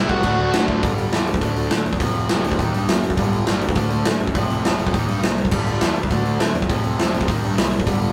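A bluesy overdriven lead guitar, dark and up front, opens this energetic, rowdy punk rock clip with a brief distorted melody from F#4 to F#5. Alongside it, a very quiet distorted electric guitar and a compressed, double-tracked fuzz guitar play riffs until 0.8 s. An overdriven electric guitar, bright and picked, carries its riff through the whole clip, together with a growly fuzz bass that is both direct and amped. A big acoustic rock kit enters at 0.1 s, with a punchy kick, medium-tuned snare, hi-hat and crash cymbals sitting up front in a natural big-room sound. At a straight, driving 205 BPM in 4/4, the band cycles through G5, D5, F5 and Eb chords in a rough rehearsal-room recording with light reverb, cut from a longer piece.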